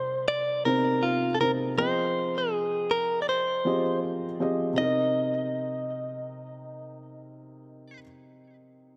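Light reverb and a small-room ambience frame this moody, longing R&B fragment, cut from a longer piece, with a gently swung sixteenth-note feel. A felt-muted upright piano, soft, mellow and intimate, sits up front as accompaniment over Cm9 and Fm9 before settling on Cm7 at 4.8 seconds. Alongside it, a clean, compressed electric guitar recorded direct carries the picked melody until 8.0 seconds, leaving the piano to close the passage at 9.0 seconds.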